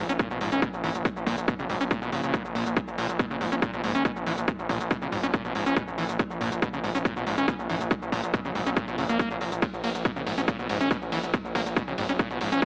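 The recording has an AM radio character, soaked in echo and set in a moderate plate reverb, in this dark, industrial stretch of driving peak-time techno cut from a longer piece. An overdriven electronic kick sits up front, heavy and layered, while a techno drum kit of smooth hats, ride cymbal, shaker and toms pumps against it under its own overdrive. A gritty, saturated synth bass with a resonant filter pluck and oscillator-sync bite holds the low end, its sustained notes pumping with the kick. Over it screams a squelchy, distorted acid riff, resonant and decaying, with filter sweeps, chorus, cassette-tape grit and dub echo trailing each phrase. Far beneath, a very quiet, eerie FM drone on Bb2 hangs as a metallic, inharmonic haze with a slow attack and long release.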